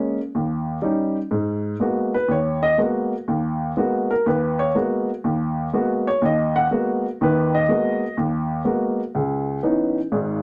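A baby grand piano carries this short solo jazz excerpt alone, its tone warm, intimate and natural, with long sustain and the clatter of its action audible up front in the mix. The mood is late-night and smoky, set at 122 BPM in 4/4 with a swung eighth-note feel in G# minor. The piano ranges from G#1 up to F#5, opening over a D#7 before settling into a G#m9 at 1.3 seconds, where its solo passage begins and runs to the end. A C#m9 arrives at 9.1 seconds, shading the close of the phrase. A moderate studio ambience surrounds the instrument, giving the playing a close presence, and the recording is cut from a longer piece.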